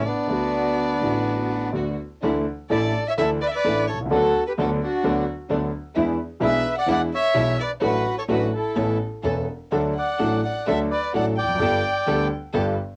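A rubato 4/4 pulse at 128 BPM drives this passionate, elegant tango fragment in D major. A reedy, dark, smooth bandoneon sings the melody up front, while a close, expressive solo violin with vibrato, soft attack and portamento weaves a bowed second line. A grand piano with deep bass gives up-front, warm accompaniment, and a rich, focused chamber string section adds bowed stabs with vibrato in the background, over harmonies running from D6 through Bm7/D and E7 to Gadd9. The piece was captured as a home cassette recording in a wet booth with a short 0.2-second decay.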